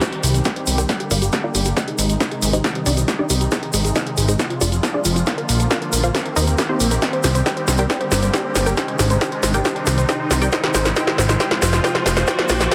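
Uplifting trance at 137 BPM in C minor, this soaring, euphoric build-up is cut from a longer piece and runs through a chord cycle of Cm, Gm, Ab and Fm that touches Bb and Eb6 along the way. A lush, detuned unison pluck carries the melody with a fast attack and short decay, pumping against the sidechain and trailed by digital delay while a filter sweep moves across it for the whole stretch. Beneath it, a filtered supersaw swell holds sustained chords with a soft attack and an evolving, detuned sawtooth body that also pumps. A plucky analog bass, funky and up front with a decaying filter pluck, enters at 0.2 seconds. The drums sit in a drum fill throughout, with a tape-warm, punchy analog machine snare and hi-hat up front, an electronic kick tucked into the background, a grainy, mellow tube shaker, and a very quiet riser. Light reverb and digital ambience frame a dense, heavily limited modern master.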